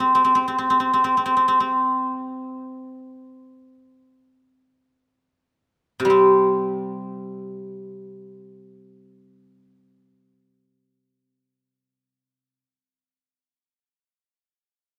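A solo guzheng, ringing and silvery, played up front with fingerpicks between C3 and C4, carries this contemplative, longing fragment of Chinese traditional music at a slow, rubato 28-36 BPM in 4/4, easing its pace through the opening 6.1 seconds before moving into a new passage that lasts until the close, all wrapped in light reverb.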